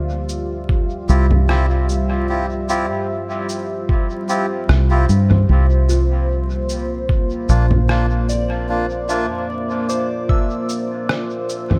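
A lightly swung groove of muffled, pitched-down sampled cabasa, congas and rim click with dub echo, plus a thumpy, compressed electronic kick up front, drives this hazy, spacious ambient dub excerpt, where a foam-muted fingered electric bass sits forward beneath a deep, detuned sawtooth pad moving from Dm11 to C9sus4 at 5.5 s, reedy, breathy melodica stabs carry dub echo, and a soft, pure FM synth bell returns at 5.9 s with chorused arpeggios in the background, the whole bathed in light reverb and vinyl crackle.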